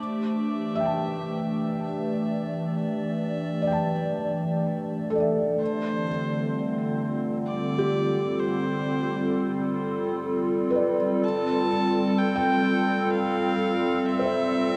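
A nasal, earthy electric violin with light vibrato fades in with a melody over a warbly, detuned tape-like pad holding chorused chords, and at 0.8 seconds a felt-muted upright piano with audible action noise joins with soft arpeggios, violin and piano both trailing tape echo in this serene, melancholic ambient fragment in three-four time that moves through Em7, Dm7 and Fmaj7 inside a huge, dark reverb.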